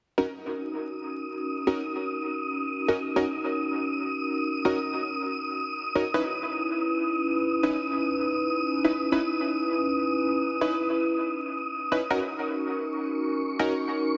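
A warbly, nostalgic tape-like pad holding sustained chords and a nasal, band-passed chord stab with chorus, dub echo and a filter sweep open this raw, atmospheric drum and bass excerpt at 161 BPM at 0.2 s, joined at 0.8 s by an airy, breathy wind-like tuned noise texture high above, all moving from D#m7 to C#m9 and back within a wet plate reverb on a dense, heavily limited master dusted with vinyl crackle.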